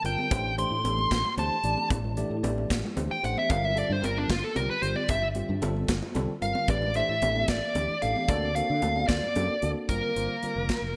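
A dark, smooth lead guitar sits up front with overdrive and digital delay, playing a solo across the first 9.9 seconds of this nocturnal, driving electric jazz fusion excerpt in G dorian, set in 6/8 at 75 BPM counted in dotted quarters. Beneath it, a worn, slightly out-of-tune tine electric piano sounds clean through its built-in speakers, while a fretless electric bass, direct and treated with ensemble chorus, anchors the low end. A polished modern studio drum kit with a punchy kick, medium-tuned snare and hi-hat sits forward in the mix under gated reverb, and high-tuned, ringing congas played with soft hands stay in the background until 9.5 seconds. The chords move through Am7, Gm11, A9sus4 and D7b13 before settling on Gm7 at 9.9 seconds, where a breathy tenor saxophone enters with a whispered, intimate subtone, vibrato and scooped notes on a single Bb3. The whole is framed in a lush hall reverb with studio ambience and a bright 1980s-style digital production.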